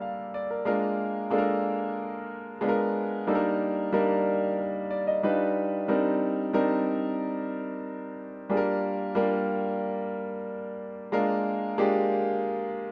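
Breezy and urban, this short pop fragment, cut from a longer piece, features a clear concert grand piano playing alone for its full 12.9 seconds, its deep bass and long sustain sitting up front with a natural tone. The chords move through jazzy colors such as Gm7, Bb7b9, Ebmaj7 and Cm9 in a straight 4/4 feel. A moderate stone-room reverb surrounds the piano, and the recording has a live, one-room quality with its upper sparkle gently rolled off.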